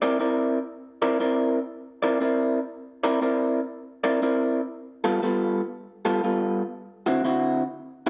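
A lone electric guitar through a small old amp opens this brief blues excerpt, cut from a longer piece, and carries it from 0.0 to 8.1 seconds. The mood is laid-back and gritty, moving at 119 BPM in 4/4 with a loose swing on the eighth notes. The fingered guitar sits up front with a twangy, slightly broken-up tone, compressed and lo-fi, ranging from D3 up to D5. The harmony rests on C9, shifts to G9 at 4.7 seconds and then to D9 at 6.7 seconds. A moderate reverb from a large studio surrounds the playing, and the sound of a band playing live in one room has a dulled top end.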